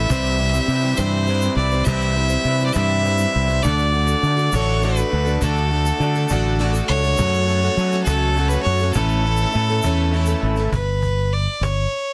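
A clear, earthy fiddle carries the melody over a shimmering, octave-doubled twelve-string acoustic guitar, a slightly broken-up lo-fi electric guitar riff, faint slow-rotary tonewheel organ chords and a round, punchy fingered bass up front, with a snappy cajon and grainy egg shaker joining at 0.1 s, in this nostalgic, open-road folk and heartland rock cut at 68 BPM in 6/8, moving from C through D, F#m and A until the other parts fall away at 10.7 s, leaving fiddle, bass and cajon on a G chord in a dense, heavily limited modern master.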